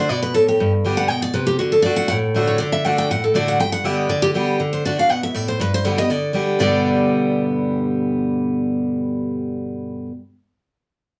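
A lively studio room with a short, wet ambience captures two picked steel-string dreadnought acoustic guitars, both full-bodied and up front, playing live together in this joyful, driving bluegrass excerpt at 240 BPM with a light swing in G major. One guitar carries the melody in a warm, high register, its finger squeaks audible, while the brighter second guitar supplies accompaniment in a lower range. The short passage moves between D and G chords across three brief sections and is cut from a longer piece at 10.1 seconds.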